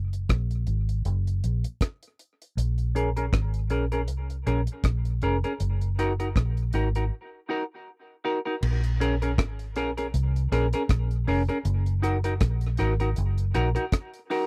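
A dry, close recording in a 1970s studio style, with little reverb, frames this meditative, deep dub reggae excerpt in Bb minor at 79 BPM, its sixteenths carrying a gentle swing. The vintage muted fingered electric bass sits up front with a round, foam-muted, amped tone, holding the low register from F1 to C2 until 13.8 seconds. Beside it, the deep reggae drum kit sounds dark and smooth, with a tight kick, hi-hat, rim click and crash cymbal. At 3.0 seconds a semi-hollow electric guitar enters in a clean, picked, hollow-body voice, softened by a low-pass filter and coloured with lush chorus and tape echo. Breaks open the piece and return briefly later, while the harmony moves between Gb, Bbm7 and Gb6.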